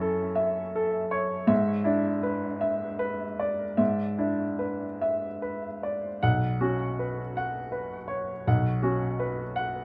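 The recording places an upright piano up front in a small room with moderate reverb, its sound colored by tape echo. The instrument's tone is woody, smooth and vintage, and its short sustain lets each note fade quickly. This is neoclassical minimalist piano in 6/8, played with a free, rubato feel that gives it an intimate, melancholic mood. The solo piano ranges from B1 in the bass up to F#5, moving from F#m7 to E7/G# at 1.5 seconds and arriving on Bsus2 at 6.2 seconds. The brief fragment is taken from a longer piece and lasts just under ten seconds.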